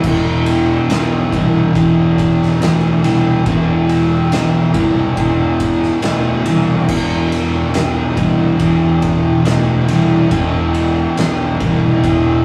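A straight 4/4 pulse at a slow 70 BPM drives this sludgy, heavy stoner and doom metal excerpt, where two thick, distorted, picked fuzz guitars grind a riff on an E5 chord in the background, a growly, overdriven fingered electric bass with tube saturation rumbles beneath them, and an oversized low-tuned acoustic kit with a punchy kick, fat snare and dark crash and ride cymbals pumps in a bright stone room until 12.2 seconds, all of it heard as a rough rehearsal-room recording with small room ambience and light reverb.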